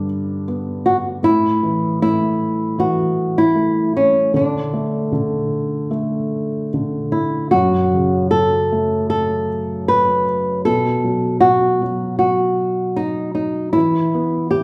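The rhythm is loose and rubato, drifting around 77 BPM in 4/4, as this tender, gentle lullaby for children unfolds in a brief section cut from a longer piece, tuned with A4 at 438 Hz. A felt-muted upright piano opens alone at 0.0 s with a soft, dark, intimate accompaniment, its thick felt and audible action noise sitting up front in the low and middle register. At 0.9 s a thumb-plucked flamenco guitar enters with the melody, acoustic and present, sitting slightly louder than the piano in a narrow upper range. The harmony moves from G through open A and D power-chord colours, then at 7.5 s shifts into a second passage that begins on F#m and passes through B5 and E5. A wet recital-hall reverb, as heard in a church or concert hall, surrounds the pair and lends the lullaby a hushed, spacious glow.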